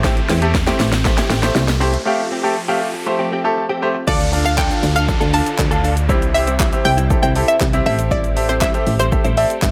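An up-front deep house drum kit with a punchy kick, fat snare, crash cymbal, handclaps, hi-hat and shaker drives this driving, confident dance-pop excerpt at 119 BPM in D minor, opening with a build-up of a drum fill and riser and downlifter effects before a break at 2.1 seconds. A round, mellow FM bass and a brilliant, polished grand piano carry sidechain pumping, while a swirling, vintage string machine with phaser sits in the background beneath a clean, direct-recorded electric guitar riff with ensemble chorus, as the harmony moves from Am7 and Fadd9 to Dm, C and Am7. At the drop at 4.1 seconds a full-bodied sawtooth analog pluck takes the melody with filter sweep, chorus and tape echo, and the whole mix sits in a light digital ambience.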